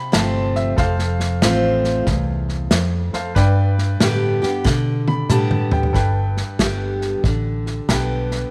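A full-bodied, picked steel-string acoustic guitar sits up front in this short, sunny slice of honky-tonk and classic country, cut from a longer piece and carrying a nostalgic, swung feel in 4/4. Beside it, a bright upright piano with a woody, open sparkle adds fills at the very start and again from 4.7 to 6.0 seconds, sitting a little further back in the mix. A vintage fingered electric bass, foam-muted and round, gives a dark, amped bottom end. The acoustic drum kit, played with bundle sticks, has a punchy kick, a medium-tuned snare, hi-hat and toms, and it joins the piano with a fill from 4.7 to 6.0 seconds before the music moves into a new section at 6.0 seconds. The harmony shifts from F to Gadd9 at 3.4 seconds, and light reverb with a small room ambience surrounds the airy, polished kit.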